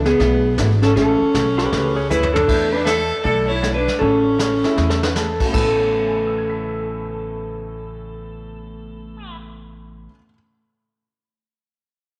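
A swinging 4/4 pulse at 157 BPM drives this down-home country and western swing excerpt in A major, where a clean, up-front lap steel guitar carries the fingerpicked slide melody until 5.1 seconds, a biting fiddle with light vibrato adds a second line, a compressed pedal steel guitar with volume swells joins at 1.6 seconds, and an intimate, slightly detuned upright piano, a dark hollow-body jazz guitar in the background, a thumpy pizzicato upright bass and a vintage brush kit with dark cymbals and drum fills sit in a wet echo-chamber reverb.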